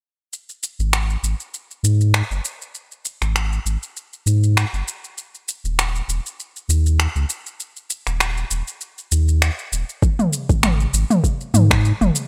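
Earthy and mystical, this brief organic downtempo excerpt sets an up-front, overdriven electronic drum kit of finger snaps, shaker and toms in a small room, swung on the sixteenths, over a deep, round sine sub bass with a fast attack and sustained notes, while a soft, overdriven electronic kick joins at 10.0 s in the closing section, all within a digital ambience.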